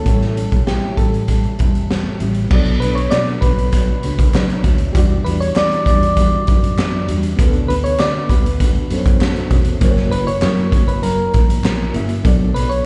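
This mellow, wistful indie and bedroom pop fragment sounds like a live gig heard through a club's PA, dusky and soft-edged with its top end dulled and a roomy reverb around it. A soft, round synth with an electric-piano-like tone carries the melody, its gentle, quickly decaying notes dressed in lush chorus, slapback echo and digital delay. Beneath it, a reedy electric piano shimmers with fast tremolo in the background, while a nylon-string guitar adds full-bodied, thumb-plucked support with audible finger squeak, a subtle chorus and vibrato. A foam-muted fingered electric bass gives a punchy, rounded low end, and a raw garage drum kit sits up front with a boomy kick, a high-tuned snare, hi-hat and crash, sounding saturated and gritty in a stone room. A very quiet, crisp group handclap joins at 3.1 seconds and drops out at 11.8, as the harmony drifts from an opening A7 through jazzy minor ninth chords and an F#7 before settling back at 12.2 seconds.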